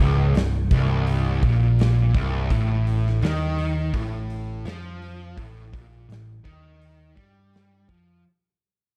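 Ominous and hypnotic, this short stoner and doom metal passage, cut from a longer piece, fades out across its full 8.2 seconds while a double-tracked fuzz guitar riff sits up front with a dark, distorted tone over a growly, overdriven picked electric bass that stays bright and punchy. A big rock drum kit enters at 0.3 seconds with a punchy kick, medium-tuned snare and hi-hat in a smooth, big-room acoustic sound, all set in light reverb with a dark, warm production as the harmony moves from Abadd9/C to F9/A.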